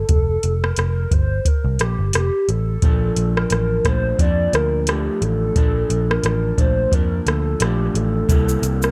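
An overdriven analog rhythm box with a deep kick, metallic hats, rim click and shaker sits up front from the start, alongside a dark, round, foam-muted picked bass and a hollow, woody synth lead whose soft, sustained notes carry phaser, lush chorus, tape echo and vibrato. This hazy, laid-back bedroom pop fragment moves at 88 BPM in Bb major with a gentle 16th-note swing, drifting from Fsus4 to Bbmaj7 and on to C7. At 2.8 seconds a slightly broken-up electric guitar through a small old amp joins as accompaniment, its subtle chorus and warbly pitch drift adding to the dry, close-sounding mix.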